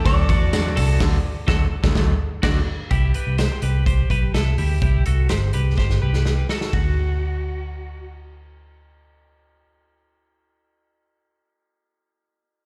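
A straight 4/4 pulse drives this nostalgic, breezy fragment of jangly indie pop, where a punchy vintage kit with dark cymbals and a round, foam-muted fingered bass sit up front beneath a bright, twangy twelve-string electric guitar shimmering with harmonic tremolo and tape echo, while two slightly broken-up electric guitars through a small old amp, one carrying a brief melody and the other a lo-fi, spring-reverbed accompaniment, drop out by 2.6 seconds; a faint, jingly tambourine flickers at the start, a band accent lands from 1.0 seconds and a drum fill arrives at 5.8 seconds, captured as a live gig through the venue's PA with recital hall reverb.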